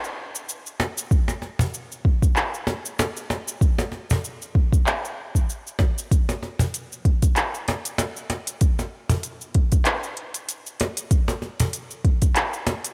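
Downtempo percussion groove with an earthy, hypnotic sway, where a soft, overdriven electronic kick sits up front beneath a produced kit of handclaps, smooth hi-hats and shaker, joined at 0.8 seconds by a snappy, compressed cajon fitted with snares, all in a 16th-note swing under light digital ambience.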